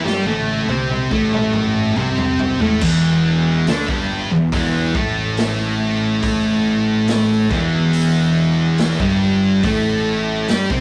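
A rough rehearsal-room recording with saturated warmth and a moderate small-room reverb gives this brooding, hypnotic stoner and doom metal excerpt a close, gritty feel, sitting at a slow 70 BPM in 4/4 and E minor, tuned slightly below standard pitch. Three distorted guitars carry the riff throughout: a bright, scooped, high-gain guitar that is double-tracked, a dark fuzz guitar set in the background, and a warm, louder fuzz guitar. Beneath them, a fingered electric bass with growly, punchy overdrive and fuzz holds the low end from the background. An acoustic garage drum kit with a boomy kick, medium-tuned snare, hi-hat, crash and toms comes in at 0.1 seconds with a fill, its pumping room sound and rolled-off top adding to the grime. The music moves from an A5 chord to a long stretch on E minor starting at 2.8 seconds, then returns to A5 at 9.6 seconds.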